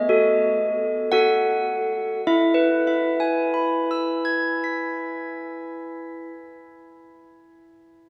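Handbells ring out alone in this short classical fragment cut from a longer piece, a serene yet festive tune in E major at 53 BPM in a straight 3/4, their clear, bell-like tones struck with hard clappers and sitting up front across a span from E4 to B6. The opening phrase slows as a rootless B7 chord resolves to E at 2.3 seconds, moving into a second section that runs to 5.6 seconds. A wet cathedral reverb with a 5.9-second decay carries the bells through a church or concert hall, though the bells themselves keep a boxy, close character.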